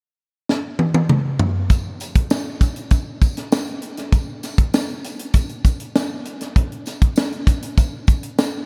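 A light reverb surrounds this short, slick pop cut in straight 4/4, carrying a bittersweet mood. An up-front, tight funk drum kit of hi-hat, kick, snare and toms, with a natural small-room sound, high-tuned snare and tight kick, opens at 0.5 seconds with a fill. At 1.7 seconds a jingly, bright tambourine joins from the background, distant in a large room.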